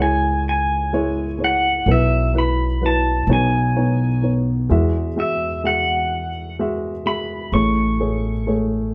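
A twangy pedal steel guitar carries the melody with slide and volume swells, while a dark, mellow baby grand piano, its action noise audible up close, and a woody, thumpy pizzicato upright bass begin together in this tender, hopeful acoustic folk-pop ballad excerpt. The slow 6/8 pulse sits at 42 BPM in dotted quarters in E major, moving from C#m through Bsus4 and Badd9 to Eadd9 before settling on Amaj7 at 7.5 seconds. Moderate studio reverb places the trio further back in the room, giving the intimate playing a soft halo.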